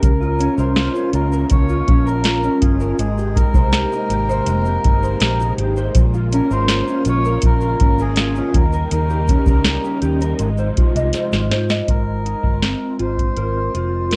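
A soft, tape-warm vintage rhythm box, a round, foam-muted electric bass, a slightly broken-up guitar through a small old amp with warbly pitch drift, and a reedy, breathy melodica with tape echo open this hazy, laid-back bedroom pop excerpt at 81 BPM in Ab major, backed by a phased sawtooth string-machine cello pad and a grainy egg shaker in the background, both of which drop out after a drum fill from 11.1 to 11.9 seconds, all on worn, warbling cassette tape.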